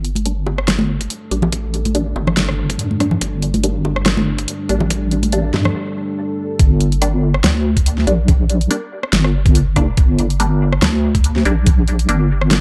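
Deep dubstep at 142 BPM in G minor, brooding and dark, with a half-time feel and a light swing on the sixteenths, held on a single G minor chord throughout this cut from a longer piece. A deep, soft wobble bass with a square-and-sine core and a chorus sheen sits up front from the start, joined by an overdriven deep house kit of hi-hat, rim click and a fat snare, while close, dry congas and bongos trail dub echo until 5.7 s. A muted, resonant chord stab, wave-folded and plucky with a phaser and echo, and a moody, full-bodied analog pad with a slow attack and sub octave both move under filter sweeps through the build-up. A gritty, thumpy, pitched-down kick enters at 1.0 s, re-recorded in a small room and placed up front. After a short break, the drop arrives at 6.6 s, where the pad falls away and the bass, kit, kick and stabs carry on in light digital reverb.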